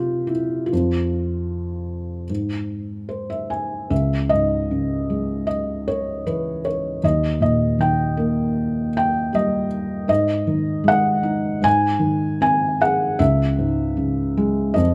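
Classical solo piano in a reflective, wistful mood, this short cut from a longer piece unfolds at a rubato 77 BPM in 4/4 on a felt-muted upright piano with a dark, mellow, intimate tone, audible action noise and thick felt, placed up front by close, detailed microphones in light reverb, moving from F minor to C# minor at 3.9 s after a brief fill from 2.7 s.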